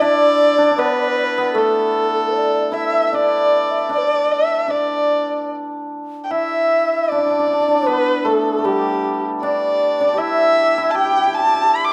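Festive yet pastoral, this short cut from a longer Chinese traditional chamber piece moves in free rubato around 77 BPM in D zhi mode, with a dark, woody erhu bowing the melody up front with vibrato and portamento, a shimmering, ringing hammered dulcimer also up front on a lower second line, and an airy, tongued bamboo xiao with vibrato sounding a second line in the background until 11.7 seconds, the ensemble set in a moderate recital-hall reverb and shifting into a new section at 6.3 seconds.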